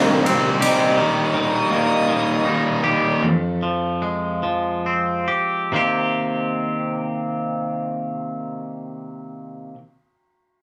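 A wet, live-in-one-room sound frames this melancholic, cinematic post-rock excerpt in C minor, moving at 44-55 BPM in a straight 6/8 that slows from 1.0 to 5.7 s as a reedy, gut-string chamber section holds sustained chords, a felt-muted upright piano murmurs brief arpeggios in the background, an up-front distorted fuzz guitar riff drives until 3.2 s, a bright ride cymbal touches in, and a twangy, compressed clean guitar keeps arpeggiating until 9.8 s over chords moving from Cm7 through Eb and Fmadd9 back to Cm7.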